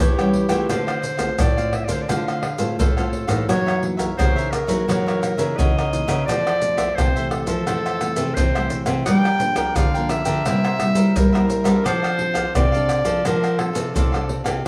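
A straight 4/4 samba-and-choro groove sets a playful, lively mood, carried by up-front percussion of maracas, pandeiro, tamborim and a deep surdo with a vintage, band-limited, acoustic character. A bright clarinet takes a classical-style solo for the full 14.7 seconds of this excerpt. Beneath it, a crisp, picked cavaquinho and a full-bodied, fingerpicked classical nylon-string guitar fill out the accompaniment, while a second nylon-string guitar, warm and thumb-plucked, holds down the bass from the background. The harmony moves from A7 and Dm7 through Gb6 and Fmaj7 before resolving via Gm7 and C7 to F6. The band plays live in one room, wrapped in a wet studio reverb that gives the ensemble a lively, shared space.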